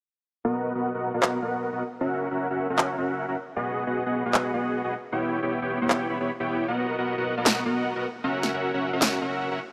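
A thick, detuned supersaw riff leads this lush, bright future bass excerpt, its compressed unison saws fattened by a sub octave and vibrato, run through tape echo and a low-pass filter sweep that spans the whole passage from 0.4 seconds. Punchy, layered electronic handclaps and snare arrive up front at 1.2 seconds with their own studio reverb, riding a half-time 154 BPM groove with a light swing on the 16ths. In B major, the chords move from Bmaj7 through F#7, G#m7 and Em6, all inside a huge ambient reverb with a touch of lossy compression grit.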